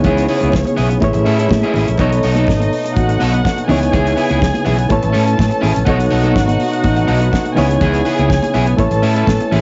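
Disco at 124 BPM in C# minor, glamorous and sultry, cycling C#m7, Amaj7 and B7 over a round, up-front fretless bass and a dry, damped 70s drum kit with a fat snare and tight kick, while a barky, gritty overdriven reed electric piano with tremolo and a slightly broken-up picked electric guitar share the accompaniment, a lush, woody violin section carries a second line, a mellow French horn section holds background chords, and very quiet congas add percussion, all heard as a dry, cassette-like home recording in this short excerpt.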